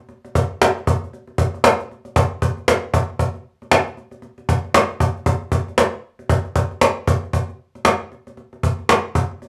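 Pop excerpt with a sunny, carefree mood: a lone cajon plays throughout with a lightly swung 16th feel, its woody, vintage, band-limited tone with faint snares and soft hands sitting up front in a wet studio ambience.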